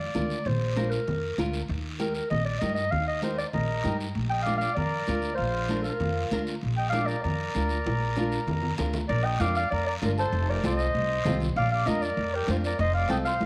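Latin cumbia, sunny and danceable, led by a mellow, distant clarinet in classical style that sits up front over a woody, growly pizzicato upright bass. A fingerpicked flamenco guitar with audible finger squeak, a raspy guiro and ringing, high-tuned, band-limited congas carry the groove, while a reedy, full accordion with tape echo joins as a second line at 3.5 seconds. A drum fill at 7.9 seconds leads into a new section, and the whole mix sits in a moderate spring reverb.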